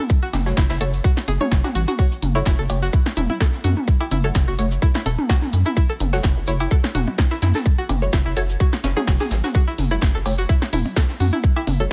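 A tight, up-front electronic kick drives this cool, sparse minimal techno excerpt at 127 BPM in F# minor with a light 16th-note swing, joined by a rubbery, hollow square bass that pumps against it, a twangy string-like resonator pluck with chorus and delay, a muted, deep dub chord stab washed in phaser, a punchy analog drum machine, tape-warm electronic toms, cowbell and percussion blips, and a very quiet, airy brush kit, all sitting on a single F#m chord in digital ambience.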